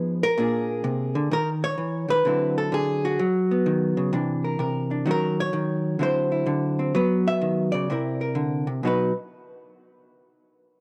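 A dry, close recording with the feel of a 1970s studio places a single guitar up front with little reverb around it. This is a short cut from a longer solo jazz piece, relaxed and playful, moving at 128 BPM in 4/4 with swung eighth notes. The only instrument is a vintage hollow-body electric jazz guitar, picked and compressed, with a dark, clean tone that ranges from A#2 up to E5. The harmony moves through rich, colorful chords such as A#7, C#m13/D#, D9, F#sus4, C9 and D#m7, with suspended and ninth chords giving the changes a loose, easy lilt. The guitar plays from the start until 9.1 seconds, and the harmony arrives at a B chord at 8.8 seconds as a new section begins.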